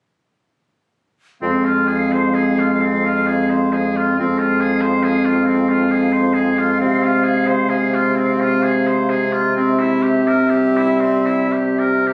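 Captured on a phone in the room, this short cut from a longer piece carries a moderate wash of large-studio and club reverb, with compression pressing the whole picture together. It is a slow, romantic classical movement for wind quintet in F minor, moving in 3/4 at around 52-70 BPM with a rubato feel, and its mood is yearning and solemn. All five players sound together from 1.4 s to 12.1 s, the harmony resting on F minor, shifting to F minor over C at 6.8 s and arriving on C7 at 9.6 s. A silver concert flute carries the melody with an airy, metallic tone, soft attacks, vibrato and lifted highs, singing expressively, while an up-front oboe adds a bright second line with light vibrato. The mellow clarinet and a close-miked French horn hold the accompaniment, and a bassoon, also close-miked and touched with light vibrato, anchors the bass.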